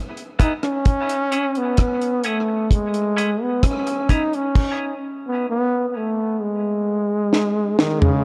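A deep, dry reggae drum kit sets a slow, straight dub groove with a tight kick, a high-tuned snare, rim clicks, hi-hat, crash and toms, closing this short, meditative fragment with a fill at 7.3 seconds. Up front, a clear solo trombone sings a smooth, vibrato-laden pop-style melody through tape echo, while a clean, fingered electric guitar adds soft, compressed, high-passed accompaniment over E and C# minor until 4.2 seconds. A moderate echo-chamber reverb wraps the dark, warm mix in a deep, spacious atmosphere.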